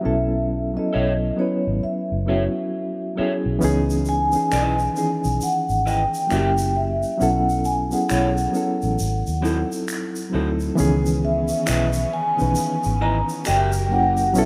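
Introspective and smooth, this slow neo-soul R&B passage at 67 BPM in C# minor, with swung sixteenths, sets a reedy electric piano with fast tremolo and a round, punchy, foam-muted electric bass up front beneath a mellow soft-mallet vibraphone melody, while a slightly broken-up, lo-fi electric guitar adds a quieter second line, distant tube shaker and finger snaps arrive at 3.6 seconds, and a bowed sul tasto string section slips into the background at 10.8 seconds, the whole rough home demo mix sitting in a lush hall reverb.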